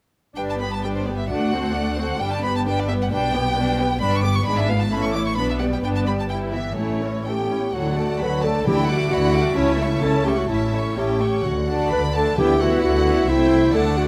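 A moderate scoring-stage reverb surrounds this lively, spirited classical-period orchestral passage, cut from a longer movement in two-four with a rubato feel. A rich violin section carries the expressive, vibrato-laden melody over a soft, sul tasto second violin line, a clear and focused viola accompaniment, a woody cello section in the background and a smooth, even double bass section. At 7.3 seconds a dark solo clarinet enters with a soft-attacked second line, and very quiet, dry timpani on medium mallets join from 8.7 seconds.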